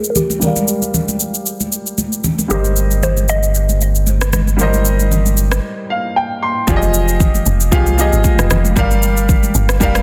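A dense, heavily limited modern master with digital ambience frames this soulful, deep amapiano cut, taken from a longer piece, moving at 115 BPM in 4/4 with a 55% swing on the sixteenths in F dorian. A baby grand piano, open and up front with short sustain and a low-pass filter, carries the chords from Gm7 to Cm7/G. An electronic, layered house kit of kick drum, rim click and shaker sits prominently beside bright, high-tuned congas heard in a distant large room. A woody, mallet-like synth pluck with chorus, phaser and tape echo states a mellow melody until 6.1 seconds, while a full sine-and-triangle sub bass with octave holds G1 from 2.5 seconds. A filter sweep runs through the opening, then a break brings a grand piano fill before the drop at 6.7 seconds, where a dark, round log drum bass with a fast, decaying FM attack takes the low end across Fm7 and Gm7.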